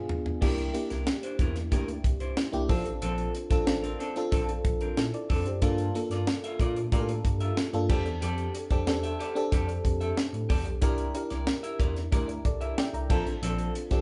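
A short drum fill and a band accent open this slick, bittersweet slice of polished 1980s jazz-funk pop, cut from a longer piece, before the groove settles at 92 BPM in a straight 4/4. The tight funk drum kit sits up front with a dry, airy sound, a high-tuned snare and a tight kick, and it works across crash cymbal, hi-hat and toms. An FM electric piano carries the accompaniment with a glassy, bell-like attack, a warbling vintage chorus and a noise layer. A mellow tine electric piano takes the bass role in a clean, direct voice, and a semi-hollow electric guitar picks a clean, hollow-body riff from 0.4 seconds. The harmony moves through C9, Bbmaj9, Gm7 and F69 before returning to C9 and Bbmaj9. The band sounds as if it is playing live in one room, with a moderate large studio reverb and a rounded top end.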